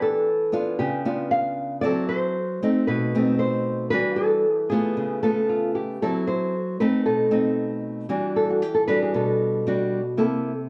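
Heard through a wet studio reverb from further back in the room, this melancholic, intimate bossa nova excerpt in E minor moves at 115 BPM in a straight 4/4, tuned slightly low to A4 = 438 Hz. Two small, dark nylon-string guitars sit up front: one carries a thumb-plucked melody with audible finger squeak and a plate reverb, while the other fingerpicks the accompaniment through a minor progression that opens on Em7 and leans on B7b9. A nylon-string guitar solo takes over at 8.1 s, over an Em9 that turns to C6 at 10.2 s.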